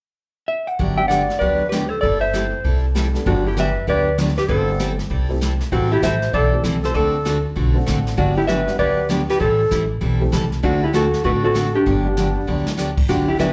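A live club sound comes through the venue's PA with a moderate room reverb, framing a cheerful, down-home western swing excerpt in G major at a brisk 195 BPM with a swung eighth-note feel. A dark, clean hollow-body jazz guitar carries the melody up front, with plate reverb and slapback echo shared by the bright, full-bodied steel-string acoustic guitar with its finger squeaks, the vibrato-laden clarinet with scooped notes playing a second line, and the jangly, detuned honky-tonk upright piano tucked in the background. A growly, woody upright bass and a brushed drum kit with dark cymbals and a boomy kick drive the progression from Gmaj7 and C6/G through Am7 and D7, capped by a drum fill at 12.5 seconds.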